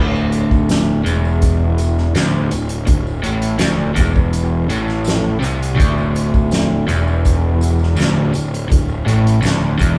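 A straight 4/4 groove from a soft-mallet drum kit, with a punchy kick, a fat snare and hi-hat sitting up front in a big room, drives this dark, trippy psychedelic rock excerpt cut from a longer piece. A crunchy, double-tracked overdriven guitar plays a low picked riff over a D5 chord, supported beneath by a fuzzy, overdriven picked electric bass, while a jingly tambourine enters at 0.2 s, close, dry and very quiet. The band sounds as if playing live in one room, bathed in a wet studio reverb.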